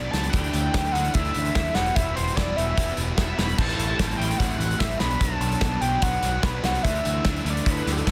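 Dry and dense, this short cut from a longer indie rock track sits close and heavily limited, with a cool, moody air at 148 BPM in a straight 4/4. An acoustic drum kit, up front and loose, enters at 0.1 seconds with a tight kick, medium-tuned snare, hi-hat and crash in a small, pumping room. A growling picked electric bass carries the low end, bright and punchy with overdrive. In the background, a fuzz guitar plays a compressed, distorted riff while a second electric guitar through a small old amp adds a twangy, slightly broken-up, lo-fi tone colored by analog chorus. Over them all, an overdriven synth lead sings the melody between G4 and B5, gritty and screaming like a guitar, its saturated sawtooth and square tones with vibrato passed through phaser and digital delay. The harmony moves from Dsus2 through Emadd9, Am7 and Bm before returning to Dsus2 at 6.8 seconds.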